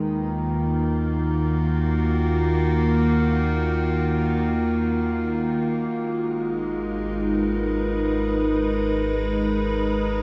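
From the first moment, an evolving, detuned wavetable pad and a round analog bass sound together, opening this serene, melancholic ambient passage in free time and G# dorian. The pad sits up front, holding sustained chords between D#3 and B4 with a slow attack and long release, its bright, morphing triangle tone thickened by chorus and haloed by shimmer reverb. Beneath it, the bass holds deep, sustained notes from G#1 to D#2, a blend of sawtooth and sine with a fast attack and a dark, softer presence in the mix. The harmony rests on D#m before shifting to G#m9 at 5.9 seconds, and both parts carry on until the cut at 10.2 seconds. A wet cathedral reverb with a long 6.1-second decay surrounds the sound, and the warm, dusky production keeps the top end gentle throughout this brief fragment of a longer piece.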